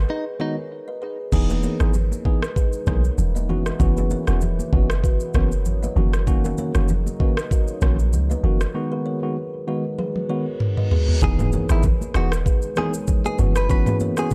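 A dark, warm production with little reverb carries this smooth, hypnotic afrobeats excerpt with a lightly swung feel, where a round, percussive log drum bass, a woody, ringing kalimba riff with tape echo and a clean tine electric piano open the piece, a knocking electronic drum kit arrives up front at 1.3 s with soft, high-tuned congas close behind, a moody, detuned pad drifts in the background, and during a drum fill a reverse cymbal rises into an impact at 11.2 s as the bright, compressed direct-recorded electric guitar returns with tape echo.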